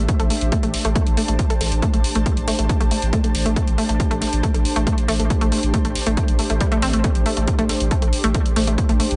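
Industrial and hypnotic, this driving peak-time techno excerpt holds to a single A minor chord in a straight 4/4 pulse. A heavy, layered, overdriven electronic kick sits at the front of the mix from 0.1 s, joined by a tape-warm analog electronic hi-hat. Underneath, a deep, thick sine sub bass with tube saturation and a low-pass filter sustains on one low note, pumping against the kick. An analog pluck carries the riff in a narrow range, its round, detuned sawtooth tone decaying through chorus, tube saturation and analog delay. Above it all floats an ethereal, airy pad with a slow attack and long release, its detuned unison voices softened by ensemble chorus and built-in reverb. The mix is echo-heavy with light reverb and a dark top end.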